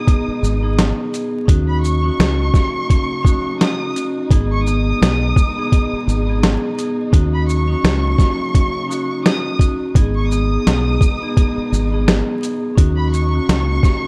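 A gritty, pitched-down boom-bap drum kit sits up front, its thumpy kick, medium-tuned snare, hi-hat and shaker carrying a compressed, sampler-style punch and the air of a large room, with a lazy swing on the sixteenths. This reflective, dark hip-hop excerpt is cut from a longer piece. Beneath the drums, a deep, round fingered electric bass plays low and punchy, while a vibraphone struck with medium hard mallets, motor off, rings out metallic accompaniment through a cassette-tape haze. A distant, lush violin section carries the high melody with soft-attacked, expressive vibrato and a digital delay. Behind it, a studio string section holds smooth sustained chords with portamento, and the whole mix sits in dark production with studio reverb and vinyl crackle as the harmony moves between G#m and D#m7.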